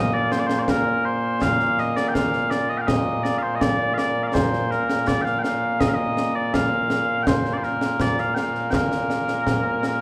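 Scottish traditional pipe music in a steady 2/4 with a stirring, ceremonial mood, cut from a longer piece. Mellow small bagpipes carry the melody from the first moment, their sweet, continuous tone colored by vibrato and placed up front as a solo voice. Concert snare drum and concert bass drum join at 0.3 seconds, also up front in the mix, with bright cymbals giving the acoustic kit a lively edge. The sound is set in a recital hall with a generous, wet reverb, lending the performance the resonance of a church or concert hall.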